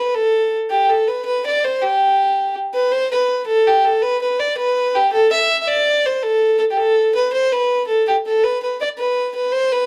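Bright and cheerful, this short cut from a longer Celtic folk piece in a straight 6/8 features a lone fiddle, dark and woody with a smooth top and light vibrato, bowed up front in light reverb across its 9.9 seconds as the tune moves from an opening section into a second one at 2.9 seconds.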